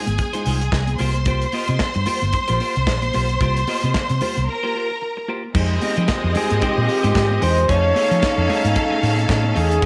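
Light small-room ambience frames this sultry, glamorous disco clip, where a lush, biting string section and a twangy, clean electric guitar ride over a round, foam-muted electric bass, a polished drum kit with a tight kick, and high-tuned congas in the background; after a break at 4.5 seconds, a dark, distant French horn section enters at 5.5 seconds, and a mellow flugelhorn melody with slapback echo arrives at 6.4 seconds.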